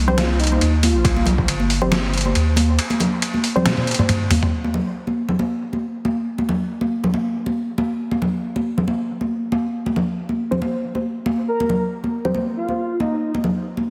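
A half-time deep dubstep groove at 138 BPM with a 55% swing on the 16ths opens this dark, heavy C minor excerpt, where a gritty, pitched-down sampler-style kit with overdrive carries the drop until a drum fill at 3.7 seconds, an overdriven electronic kick lands briefly near 1.0 seconds, and a round triangle-and-square sub bass sits up front for the opening 2.8 seconds. Ringing, saturated congas with dub echo run throughout alongside muted, detuned sawtooth chord stabs colored by chorus, cassette tape and dub echo, whose filter sweeps from 4.5 seconds. A breathy, flute-like lead with vibrato surfaces only at the start and again near 11.5 seconds, and the whole mix has a heavily compressed, radio-like sound with light reverb.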